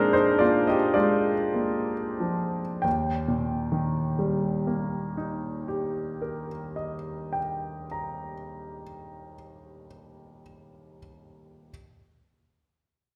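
Tender and nostalgic, this short excerpt from a longer romantic nocturne unfolds for solo grand piano at a slow 36 beats per minute in 12/8, with rubato giving the line a breathing, unhurried feel. The piano sounds clear and intimate, sitting present and up front, with the audible noise of its action adding a close, human detail. It spans from Eb2 up to Bb5 in Eb major, tuned slightly high to A4 = 441 Hz. The opening passage slows as it rests on a Bb7 harmony before settling onto Eb at 2.8 seconds, where a second section begins. A wet recital hall reverb surrounds the instrument, heard from further back in the room, lending a soft glow around the playing until the piano stops at 11.7 seconds.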